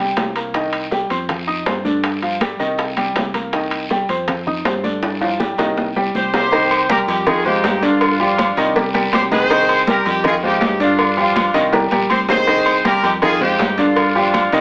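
A worn, intimate baby grand piano and a dark, round fingered electric bass open this fiery, driving salsa excerpt in C minor at 161 BPM, joined at 0.2 seconds by a tight layer of background bongos and cowbell, bright damped congas, a raspy guiro and ringing metal-shell timbales with agogo bells. At 6.2 seconds a punchy, up-front horn section takes the melody with light vibrato over the Cm7, Fm7 and G5 changes, while drum fills at 5.0 and 11.7 seconds push the groove forward. The whole mix carries an AM radio character inside a moderate studio reverb.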